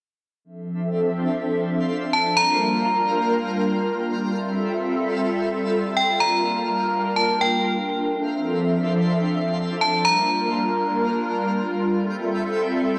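Ethereal and hazy, this hip hop excerpt in D minor drifts in free time, cut from a longer piece. A hollow, flute-like pad enters at 0.6 seconds with slow-attack sustained chords, its vintage square and triangle tones warbling through an ensemble chorus and a moving notch, moving from Dm9 through Gm7 and Fmaj9. Just behind it, a twinkling granular texture adds an octave-up shimmer, soft and sparkling, bathed in its own reverb. At 2.1 seconds a metallic FM bell takes the melody up front, its inharmonic, ringing tone decaying with a long release through chorus and analog delay until 11.4 seconds. The dry, gritty hardware sound carries only a light reverb, lending the whole a vintage haze.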